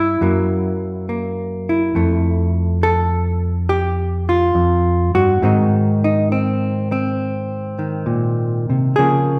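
Wrapped in the wet reverb of a recital hall, this relaxed, playful cut from a longer solo jazz piece features a single clean, dark, fingered electric hollow-body guitar, placed up front and moving through a loose rubato swing at 69 BPM in 4/4 over Gb7, Fmaj7 and Ab7 chords for 9.4 seconds.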